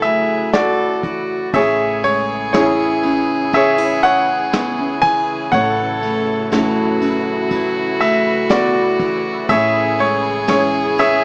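Melancholic and heartbroken, this acoustic folk-pop ballad excerpt moves at 60 BPM in 4/4, with a clear, up-front grand piano carrying the melody over an earthy, close solo violin second line, a bright fingerpicked steel-string guitar accompaniment, and a dark felt-muted upright piano playing arpeggios with audible action noise, while a sul tasto chamber string section holds sustained chords in the background, a woody pizzicato upright bass sits on A1, and a brushed drum kit with a rolled-off top keeps time, the whole mix set in a moderate large studio reverb with a small-speaker sound as the harmony moves between F#m7/A and Amaj7.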